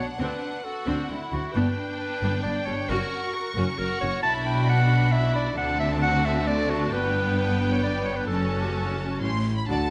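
A lush, bowed orchestra sits in the wet reverb of a scoring stage, its highs gently rounded, in this heroic, adventurous slice of a film score in three. Two violin sections with vibrato carry the high melody and a second line, while a clear, up-front solo clarinet adds its own second line, rich violas and expressive cellos fill in from the background, and focused double basses anchor the bass beneath shifting chords that land on A7. At 9.7 s a mellow French horn section adds sustained chords and a pure, hollow flute touches a single note just before the passage is cut off.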